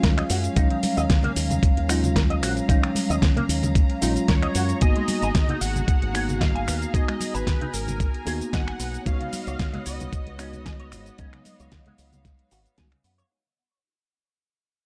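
Nu-disco at 113 BPM with a lightly swung sixteenth groove, sleek and groovy, this excerpt opens on a drop over Ebm11, Abm9 and Db9sus4, where a thumpy, up-front electronic kick and a layered pop kit with fat snare, metallic hats, cabasa and finger snaps sit alongside congas in the background, an envelope-filtered fingered bass with tube saturation and sidechain pumping, a twangy envelope-filtered guitar riff with chorus and delay, a worn, slightly out-of-tune tine electric piano with analog delay, and distant, earthy chamber violins pumping under sustained chords, until a thick, detuned sawtooth unison lead with tape echo and cassette grit enters at 4.3 seconds just before a fade-out begins at 4.8 seconds, all in a dry, gritty hardware sound.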